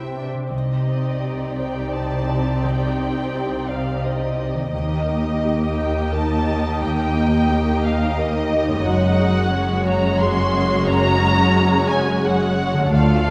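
Heard through a wet scoring-stage reverb, this tender, moving film-score excerpt in rubato 3/4 at 87 BPM sets a close, soft-attack muted violin melody entering at 0.5 seconds over a second violin line, distant viola accompaniment, background cello and veiled double bass lines, a dark concert grand piano in the background, and very quiet ringing harp arpeggios, moving from C through Cmadd9 and Eb to Gbsus2 at 8.9 seconds.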